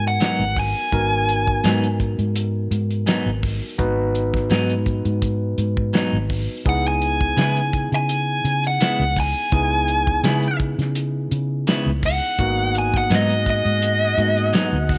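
Smoky and mournful, this 84 BPM soul blues excerpt in G# minor moves from G#m7 to C#m7 over a straight-eighth groove, anchored by a cloth-damped, thuddy drum kit with a fat snare and a round, foam-muted vintage bass sitting up front. A barky, gritty overdriven tine electric piano accompanies throughout while a twangy clean electric guitar adds bright stabs, and a dark, smooth overdriven lead guitar states the melody briefly at the start before returning at 6.7 seconds. A clear horn section with light vibrato enters in the background at 12.4 seconds with sustained chords, set within light reverb and small room ambience.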